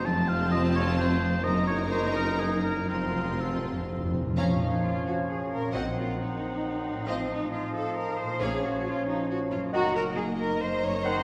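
The cello section stands out up front, bowed with vibrato and a focused tone, in this stormy, restless excerpt from a fast romantic orchestral movement in Bb minor, pushing between 118 and 138 BPM in 3/4 with a rubato feel. Above it, two violin sections share the melody and a second line in the background, lush and smooth on top, while a rich viola section fills the accompaniment and the double basses and a tuba anchor the low end, the tuba dropping out at 4.1 seconds. A solo oboe with light vibrato carries a second line from the start, and a bright, ringing harp plays arpeggios throughout. Close, dry timpani on calf heads enter at 2.9 seconds with a fill, and at 4.4 seconds the music turns to a new section as clarinet, an airy flute section, bassoon and a tight, mellow horn section with sustained chords join the texture. The harmony moves through Bbm, Cm7b5/Bb and F7/A, and a wet church reverb gives the whole ensemble a spacious hall sound.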